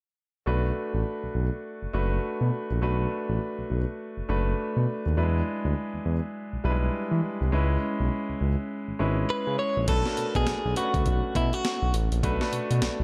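A dark, lightly reverberant mix with digital ambience opens on an intimate concert grand, its action noise audible, over a smooth sawtooth-and-triangle synth bass in a slick, punchy new jack swing groove at 102 BPM with a 16th-note swing in B dorian. The chords move from Bm7 through E7 and C#m7, and a bright, twangy, direct-recorded clean electric guitar carries a short tremolo melody from 9.3 seconds. At 9.9 seconds a gritty, compressed breakbeat sampler kit with a thumpy kick, medium-tuned snare, hi-hat and crash drops in as the harmony returns to Bm7 in this excerpt from a longer piece.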